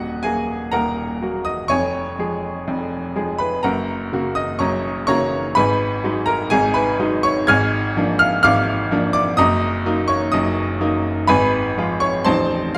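The sound is a clear, natural baby grand piano placed up front, its short sustain blooming into the wet reverb of a recital hall with about 1.5 seconds of decay. This is a classical virtuoso piano study in Eb minor, stormy and passionate, moving at 125 BPM in 4/4 with a rubato feel. The solo piano plays for the full 12.8 seconds of this fragment cut from a longer piece, ranging from the depths of A0 up to Ab6. The harmony opens on Eb minor and passes through Db over F, Gb, Abm7 and Bb7 over Ab before darkening into a diminished chord on F over Ab by 11.3 seconds. It closes on F7 over A at 12.3 seconds as the fragment ends.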